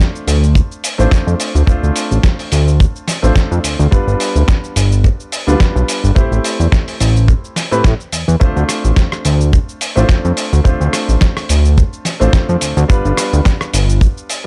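Nu-disco with a sleek, cosmic mood, moving at 107 BPM in 4/4 with a light 16th-note swing and cycling through Dm7, G7 and Am7 in D dorian. A fat, detuned analog bass sits up front, blending sawtooth, square and triangle tones with ring modulation, tube saturation and a filter sweep, while a tight, dry acoustic kick also sits forward from 0.6 seconds. Beneath them, a gritty, tape-warm sampler-style soul kit of hi-hat, rim click, shaker and medium-tuned snare, along with a short-sustain baby grand piano carrying sidechain pumping and analog delay, fills out this cassette-textured excerpt.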